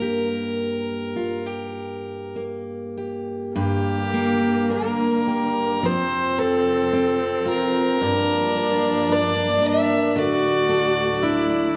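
This Celtic folk slow air moves in a free, rubato 4/4 with a mournful, haunting mood, heard as a short passage cut from a longer piece. A single fiddle carries the melody from the start, its bowed, nasal, gut-string tone sounding reedy and distant yet placed up front. Beneath it, a picked steel-string acoustic guitar accompanies with the bright, fresh-stringed ring of a dreadnought, also up front. At 3.6 seconds a solo viola adds a second line, close and intense with vibrato, a biting edge and an airy bow. At the same moment a muted string section enters in the background, holding lush, veiled, con sordino chords with soft attacks. Concert hall reverb and a dark production frame the harmony as it passes from Gm through F and Gm7 to D.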